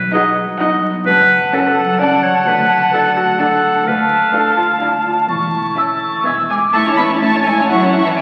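Moving in a straight three-four, this playful, whimsical cinematic cue, cut from a longer piece, sets a ringing, thumb-plucked concert harp's arpeggios beneath a background violin section's expressive melody, while a lush second violin line, an airy flute ensemble and up-front solo bright clarinet and punchy cor anglais carry second lines over smooth violas, focused cellos and a background double bass section, until the winds fall away by 6.7 seconds and a very quiet, mellow French horn section sustains chords from 7.2 seconds, the whole mix bathed in wet scoring-stage reverb and the crackle of a very old 78 rpm record.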